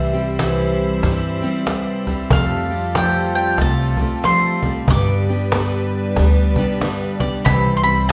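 Acoustic folk for a duo or small band, reflective and intimate, at 93 BPM in 4/4 with a gentle swing on the eighths, moving from C through Fadd9 and G back to C in this short excerpt cut from a longer piece. A warm bowl-back mandolin carries the picked melody up front over a bright, full-bodied steel-string guitar with audible finger squeak, while a woody, dark pizzicato upright bass anchors the bottom and a snappy cajon played with hard hands enters at 0.3 s. Soft-attack chamber strings float distantly behind with sustained bowed chords, and the whole band sounds like it's playing live in one room bathed in a wet large studio reverb.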